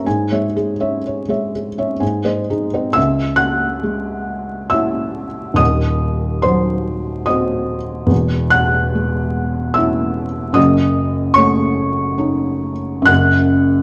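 A felt-muted upright piano plays a melancholic, mournful romantic nocturne in C# minor and 3/4, drifting with rubato between 58 and 77 BPM and tuned to A4 = 437 Hz, its dark, intimate, thickly felted tone sitting up front with audible action noise in a moderate recital-hall reverb under a layer of vinyl crackle, as the harmony moves from C#m/G# through a shift to a new section at 3.0 seconds, on to Cdim/Eb and D#m7b5/F#, before the chords fall away at 13.1 seconds and the piece, cut from something longer, ends at 13.8 seconds.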